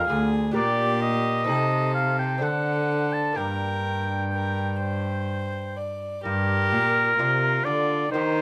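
A light reverb surrounds this solemn, grave excerpt from a baroque-style sonata movement in G minor, moving at a slow 64 BPM in 3/4 with a straight feel. An up-front oboe carries the melody with a soft attack and light vibrato, while a rich gut-string violin adds a close, reedy second line, a dark bowed cello supplies the bass, and a delicate fingerpicked lute with double strings sits in the background. The chords pass from Dm7b5 through D7 to a G minor resolution at 3.4 s, and the music turns to a new section at 6.2 s.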